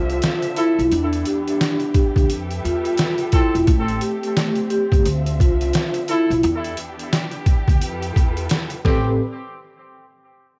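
Boom-bap hip-hop at 87 BPM in A minor with swung 16ths, this dark, tough cut from a longer piece sets gritty, pitched-down sampler drums with a thumpy kick up front over woody pizzicato upright bass. A ringing soft-mallet vibraphone and a smooth, bowed string section with portamento carry the Dm9, Em7, Fmaj9#11 and Am7 chords, while a distant jazz-style trumpet section enters with delayed stabs at 0.6 seconds, all wrapped in the muffled haze of a cassette home recording in a small room.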